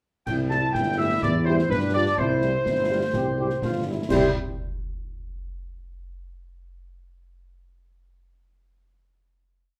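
Festive and proud, this brief military-style march for wind band in C major moves at 125 BPM in a straight 2/4, with a mellow, softly attacked trumpet section carrying the melody while a clear woodwind section doubles the tune in unison, a close-miked French horn section adds after-beat chords from 0.5 s, a warm, distant trombone section sustains chords and a counter-melody in the background, an up-front mellow tuba sets bass on the beats, and a marching snare over bass drum with dark cymbals drives the piece through a short C to G7 progression before a final chord at 4.1 s, all in a large, reverberant studio room.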